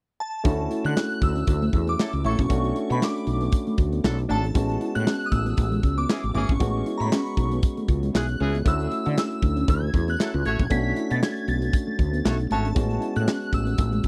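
A lightly swung 16th-note groove at 117 BPM in 4/4 from a punchy, up-front studio drum kit with handclaps, hi-hat, kick and snare drives this funky, late-night early-eighties boogie funk excerpt, where a growly fretless bass and a barky tine electric piano move through Dmaj9, Bm9 and Amaj13, a dark, clean electric guitar riff sits in the background under lush chorus, a shimmering FM bell melody with ensemble chorus floats on top, and a clear horn section with tape echo adds a second line from 2.0 to 12.7 seconds, the whole mix captured in a dry, close 1970s-style studio sound.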